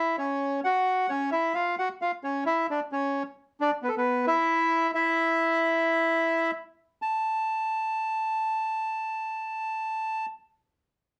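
A solo bandoneon carries this brief tango excerpt, its reedy, vintage, band-limited tone set up front and playing unaccompanied from 0.0 to 10.3 seconds. The mood is elegant and playful, with a rubato feel around a pulse of 132 BPM in 4/4. The line ranges from B3 to A5, moving through C#m, F#5, C# and back to C#m before touching Bm, after which the chords drop away. A second section begins at 7.0 seconds and runs until the cut, as this is a fragment taken from a longer piece. A wet studio reverb with a 0.5-second decay surrounds the instrument, and the room is heard from further back, framing the bandoneon's up-front voice.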